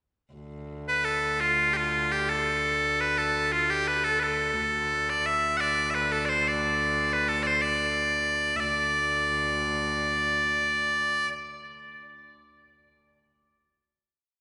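A long, wet church reverb with a darkened top end surrounds this complete medieval dance in D dorian, played in free time and speeding up from 0.3 seconds through its final note, which arrives at 8.6 seconds. A bowed, fretted viola da gamba sounds a rich, gut-strung drone on D2 from 0.3 seconds, reedy and biting with light vibrato. From 0.9 seconds the loud, piercing bagpipes carry an ornamented modal melody between F4 and F#5 up front, giving the piece an ancient, driving mood.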